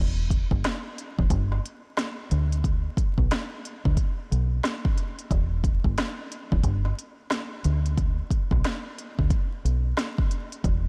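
A dark, round, foam-muted fingered electric bass sits up front from the start of this gritty, tough boom-bap hip-hop excerpt at 90 BPM with a swung 16th-note feel, joined at 0.3 seconds by a tape-warm electronic drum kit with a deep kick, woody snare and smooth hi-hats, all dry and close under a layer of vinyl crackle.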